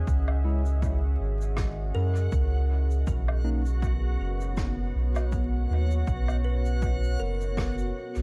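A round, mellow sub bass sits up front in this meditative, hazy ambient dub fragment, moving at 80 BPM in 4/4 with a light swing on the sixteenths. Around it, a moody pad of detuned sawtooth and sine layers holds sustained chords through chorus and its own reverb, while a reversed, granular texture swells dreamily above. An overdriven, punchy electronic kick sits in the background beside a dark, rolled-off kit of shaker, woodblock and rim click carried on dub echo. A bright, clean tine electric piano adds brief stabs with 12-bit sampler grit from 0.4 to 3.6 seconds, and a woody, ringing kalimba joins with arpeggios at 1.9 seconds, both trailing dub echo. The harmony shifts from C# minor to B major seventh inside an echo-heavy mix dusted with vinyl crackle, tuned slightly low at A4 = 435 Hz.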